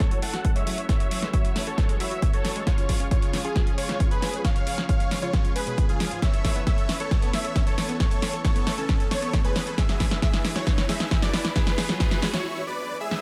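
A punchy electronic kick up front and a small-room analog drum machine's hi-hat and snare drive this euphoric, bittersweet uplifting trance build-up at 135 BPM in F# minor, where a drum fill runs beneath a huge, detuned, compressed supersaw melody carrying a filter sweep and digital delay, a phased supersaw stab adds a second line, a silky string pad holds sustained chords, a round, chorused pluck spins arpeggios in the background, all of them pumping with sidechain over F#m7, C#, Aadd9 and E, before a very quiet riser enters at 9.1 seconds and a brief break arrives at 12.4 seconds in this dry excerpt.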